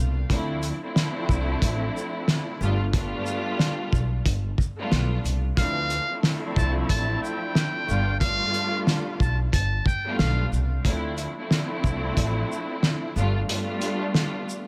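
Tough and reflective, this boom-bap hip-hop excerpt moves at 91 BPM with a swung sixteenth-note feel in D dorian, cycling between Dm7 and G7. A muted studio string section opens the passage, bowed con sordino with a veiled, lush vibrato and soft attack, its tone darkened by cassette tape and filtering. An upright bass plays pizzicato underneath, woody and dark, dropping out at 13.4 seconds. The cloth-damped drum kit sits up front with a fat snare, tight kick, hi-hat and shaker, its sound gritty, saturated and muffled in a small room, and the kick falls silent for the final second or so. From 5.6 to 10.5 seconds a trumpet with a metal mute takes a jazz-style solo, buzzy and breathy with scooped notes and light vibrato, treated with tape echo. The overall sound is dry, with little reverb.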